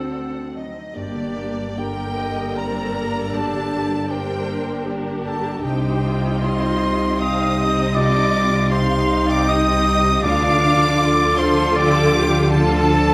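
A bittersweet, longing cinematic passage in G minor opens with a focused violin section carrying the melody over lush background violins, expressive violas, dark French horn chords, bright ringing harp arpeggios and intense cellos, while a clear oboe sounds only briefly before a pure flute and mellow clarinet enter with second lines at 0.6 seconds. Rubato in 3/4 at about 78 BPM, the music adds a smooth double bass section at 1.0 seconds, and articulate timpani played with hard mallets sound at 10.2 seconds. Cut from a longer piece, it sits in a wet scoring stage reverb.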